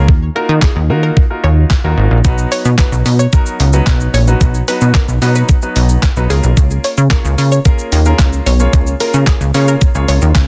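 Dance-pop at 111 BPM in a straight 4/4, confident and driving, where a punchy, funky sawtooth analog bass and a thumpy, overdriven 8-bit drum machine sit up front, a clear, polished baby grand piano comps with sidechain pumping, a round, full-bodied analog pluck with chorus and digital delay carries the melody in the background, barely audible group handclaps add a human touch, the hi-hats stay muted until 2.2 seconds as the chords move from Ebmadd9 to B and then Db6, and the dense, heavily limited mix has little reverb.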